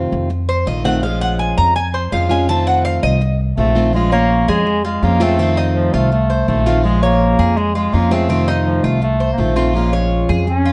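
A nostalgic Latin fragment in Bb minor at 165 BPM opens with a boxy, finger-squeaking plugged-in steel-string acoustic guitar and a woody, thumpy pizzicato upright bass on gut strings, quickly joined by a bright, metallic Cuban tres whose doubled-string arpeggios lead the opening seconds, before a clear, vintage-toned bass clarinet takes up a classical-style solo melody at 3.6 s over chords alternating between F7 and Bbm7, all set in a large studio reverb with a dark, warm production.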